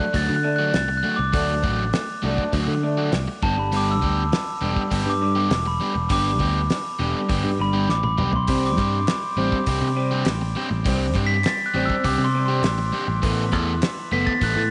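A mellow, bell-like glockenspiel played with rubber mallets carries the melody from the start of this upbeat, carefree indie rock clip at 101 BPM in D mixolydian, riding over a crunchy overdriven guitar riff with spring reverb, a slightly broken-up, lo-fi second guitar riff with analog chorus and tape echo, a growly, punchy picked bass up front, and a cloth-damped, thuddy drum kit with a fat snare whose fill at 7.9 seconds leads to a buzzy, very quiet combo organ holding chords from 8.5 seconds and crisp group handclaps from 8.8 seconds, set in a small room with light reverb.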